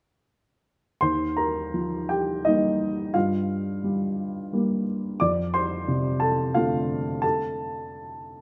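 Set in 3/4 and played with a loose, rubato feel, this short fragment of neoclassical minimalist piano unfolds at an unhurried pace. The mood is reflective and melancholic, carried entirely by a solo baby grand piano that sounds from 1.0 to 8.4 seconds. Its tone is warm and worn, with a short sustain and a close, up-front placement, and a slapback echo trails its notes. The playing spans from a deep Eb2 up to D6, moving through Ebadd9, Gm7 and Dm7/F harmonies. A light reverb gives the room a gentle sense of space around the intimate instrument.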